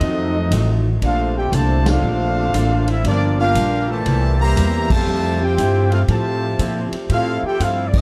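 Swinging and brassy, this short cut from a longer big band swing piece in F major moves at 118 BPM in 4/4, with a clear trumpet section carrying the melody over a bright trombone section's second line and a very quiet, close-miked saxophone section holding tight sustained chords, each horn section touched with vibrato. A woody pizzicato upright bass sits up front, a picked steel-string acoustic guitar with audible finger squeak stays in the background, and a drum kit with punchy kick, medium-tuned snare, ride, hi-hat and crash sounds natural in a big room. The band hits accents at 1.8, 4.8 and 7.9 seconds over chords running from F7b9 through Bbmaj9, Gm7 and C7 to Fmaj7, all in a dark, warm production with light reverb.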